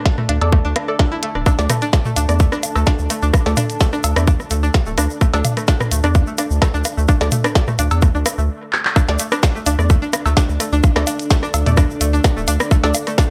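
Minimal techno with a quirky, sparse mood, set in a straight 4/4 and cut from a longer piece. A tight, tape-tinged electronic kick sits up front, joined by a minimal click kit of tiny snare, clicky hats and handclaps, and by an overdriven, booming analog drum machine whose cowbell, rim click, toms and woodblock trail off into dub echo. A round, deep bass with a fast attack pumps under the kick, while a twangy, nasal, string-like resonator pluck carries the riff with chorus, a filter sweep and dub echo of its own. In the background sit a muted, detuned dub chord stab with chorus and echo, a moody ambient pad with slow attack, long release and built-in reverb, and a grainy acoustic tube shaker that enters at 1.5 seconds. A short break with a drum fill and band accent around 8.8 seconds leads to a drop at 9.0 seconds, all in a fairly dry mix.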